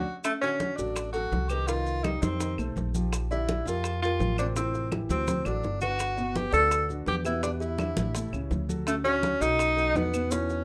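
Afro-Cuban jazz cut from a longer piece, sophisticated and danceable, where an up-front tenor saxophone carries the solo melody with vibrato, subtone and scooped notes, its distant, roomy tone wrapped in slapback echo and plate reverb, over dark, woody pizzicato upright bass, an intimate grand piano with audible action noise, a bright, hollow thumbnail-plucked kalimba second line in the background, and a percussion bed of thick, low-tuned congas, tight high-tuned bongos, vintage band-limited claves and grainy, dry maracas, with a drum fill at 5.1 seconds, all in a moderate studio room with a rough home-demo mix.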